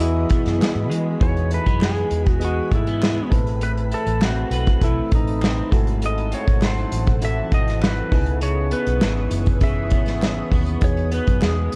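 A twangy, clean lap steel guitar carries the slide melody with volume swells over a slightly broken-up electric guitar warbling through a small old amp, mellow electric-piano-like synth keys with tape coloring, an ethereal airy pad, a round foam-muted fingered bass, an up-front unplugged drum kit played with bundle sticks and tinged with 12-bit sampler grit, and very quiet hollow group handclaps entering at 0.6 seconds, all shaping a dreamy, laid-back indie and bedroom pop excerpt at 100 BPM in E major with a dark production and small-room ambience, moving from Emaj7 through Amadd9, G#7b9b13 and C#m9 before returning home.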